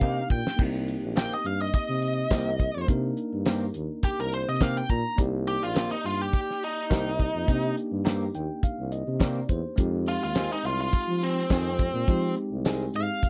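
Straight-eighth soul blues with a brooding, smoky mood, this short cut from a longer piece opens on a drum fill from a damped 1970s kit, with a fat snare, tight kick, dark cymbals, hi-hat, crash and tambourine sitting up front. At 0.6 seconds a biting, overdriven lead guitar takes a picked solo that carries the melody through to the end, its tone warm and forward. Underneath, a warm tuba with a light vibrato plays the bass line, up front in the mix. An electric guitar through a small old amp adds fingered stabs with a dark, slightly broken-up, compressed lo-fi character, while a bell-like tine electric piano supplies bright, clean accompaniment and steps out with a fill from 8.1 to 9.8 seconds. The harmony rests on Cm7 before moving to Fm7 at 9.8 seconds, all captured in a dry, close 1970s-style studio sound with little reverb.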